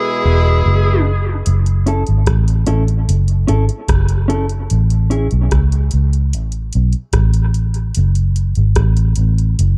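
This heavy, hypnotic dub reggae piece opens on a brief break: an overdriven, picked lead guitar through a small cranked amp holds a G#4 melody over a warm, distant horn section with light vibrato, both trailing dub echo before falling away early. A round, amped, foam-muted fingered electric bass enters at 0.3 s and stays up front from there, moving between E1 and C#2. At 1.5 s a soft vintage rhythm box comes in, its deep analog kick, metallic hi-hats and rim clicks setting a straight 74 BPM in 4/4. A mellow, clean, compressed electric guitar adds fingered accompaniment with dub echo until 5.3 s, while the harmony in F# minor moves from E to F#m7, then A, then F#m. Digital ambience and dark production give this excerpt its murky, enveloping weight.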